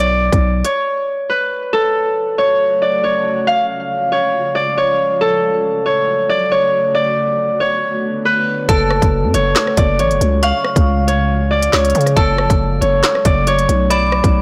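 A half-time drill groove at 138 BPM in 4/4 drives this menacing, cold hip hop excerpt in F# harmonic minor, where an up-front, fingerpicked Celtic harp carries a ringing, low-pass-filtered melody throughout. Growling 808-style bass and a drum kit with a hard-clipped kick, woody snare and crisp hats hit briefly at the start, then return in full at 8.7 s alongside a metallic, warbling FM bell line with chorus and digital delay, while a glassy, ethereal FM pad holds chords from 2.3 s. The recording sounds blown-out and overdriven, with light reverb.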